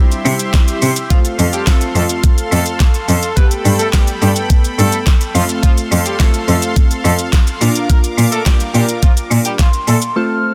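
A straight 4/4 pulse from an electronic, layered pop drum kit drives this upbeat, euphoric dance-pop excerpt, with a knocking kick, fat snare, crisp hi-hats, handclaps and shaker sitting up front. Beneath it, a single bowed cello carries the bass line, clear and nasal with vibrato, focused yet distant in tone while still prominent in the balance, and it breathes with sidechain pumping. Glassy, wave-folded digital keys with chorus and a filter sweep supply accompaniment throughout, while a soft, airy supersaw holds detuned sustained chords, both also pumping under the sidechain. From 1.1 seconds a punchy, pop-style horn section takes up the melody with vibrato and delay as the harmony moves from F to Gadd9, back to F, then on to Bb. A hollow, woody synth lead with chorus and delay sings only briefly at the opening and again from 9.6 seconds, and the mix sits in a digital ambience under a dense, heavily limited modern master.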